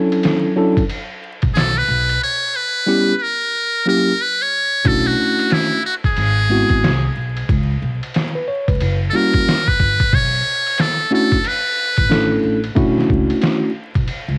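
A tine electric piano opens this nocturnal, smoky jazz-hop excerpt at 91 BPM in B dorian, its clean, up-front tone colored by cassette tape, joined by a muffled, pitched-down sampler-style drum kit with a thumpy kick and 12-bit grit, then moments later by a woody, growly pizzicato upright bass and a buzzy, brilliant metal-muted trumpet with light vibrato and scooped notes. After a silent gap from 2.2 to 4.9 seconds, the swung groove returns over extended chords such as Bm11 and F#7b9, the close-miked, forceful trumpet soloing through analog delay until 12.4 seconds. Vinyl crackle and light reverb give this home cassette recording its lo-fi character.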